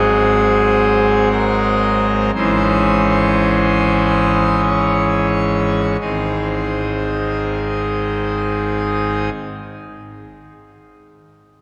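Reverent and serene, this brief classical chorale excerpt for solo pipe organ moves in a rubato 3/4, easing to a slower pace over its first 6.0 seconds before settling on a home chord. The full organ sounds majestic and brilliant with its mixtures, voiced in a romantic manner and placed up front, spanning from deep bass notes to the upper treble. A wet cathedral reverb with a long 4.5-second decay surrounds the organ and carries past its final note at 9.3 seconds.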